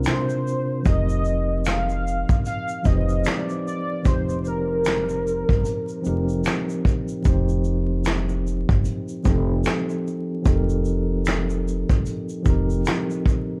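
A 75 BPM groove with swung sixteenths in 4/4 opens this dreamy, cosy lo-fi hip hop excerpt, where a vintage brush kit of tight kick, snare, hi-hat, shaker and finger snaps sits up front beside a woody pizzicato upright bass and a mellow tine electric piano with a cassette-tape tint moving from C9sus4 to F9sus4 at 0.9 s, while a velvety, detuned sawtooth synth lead with chorus, vibrato and analog delay carries the melody until 6.8 s, all under a dark production with light reverb and vinyl crackle.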